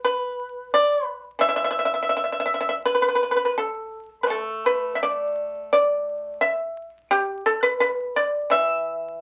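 Contemplative and elegant, this brief fragment of Chinese traditional music, cut from a longer piece, features a single pipa playing solo for its full 9.2 seconds. The pipa sits up front, its acoustic tone mellow yet percussive, plucked with fingerpicks and heard dry. Its line ranges from E3 to E5, moving in a rubato feel over a loose duple metre that lets each phrase breathe. The sound suggests a very old 78 rpm record, with vinyl crackle running under the notes and a short club reverb giving the room a gentle sense of space. The result is an intimate, unhurried passage that evokes a quiet, reflective moment.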